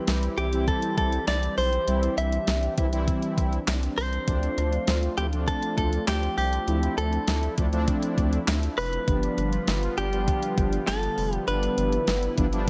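Bright and upbeat, this synth-pop excerpt moves at 100 BPM in C major, cutting from a longer piece, with a clean, picked electric guitar recorded direct carrying the melody up front through subtle chorus and delay. Beneath it, a smooth, warbling analog pad holds sustained chords in the background, a round, deep bass sits up front, and bold, fat synth brass with vibrato and a filter sweep enters at 0.4 seconds as accompaniment. A sampler-style 12-bit drum machine with a thumpy kick, handclaps, hi-hat and snare drives the groove over chords moving from C to Dm7 to G7, all in light digital reverb.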